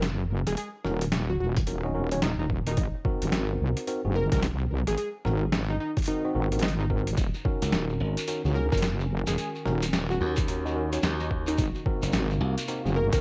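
A heavy, detuned wobble bass drives this gritty, playful glitch hop excerpt at 109 BPM in Eb minor pentatonic with a swung 16th feel, joined by an overdriven boom bap sampler-style kit of hi-hat and snare, a thumpy electronic kick from 1.6 seconds, worn tine electric piano stabs through a low-pass filter, sidechain pumping and tape echo, and a catchy plucky unison lead, while a bright glassy slap bass, a grainy shekere and, from 8.1 seconds, a very quiet nostalgic pad warbling over Ebm7 and Ab9 fill out a lo-fi cassette sound.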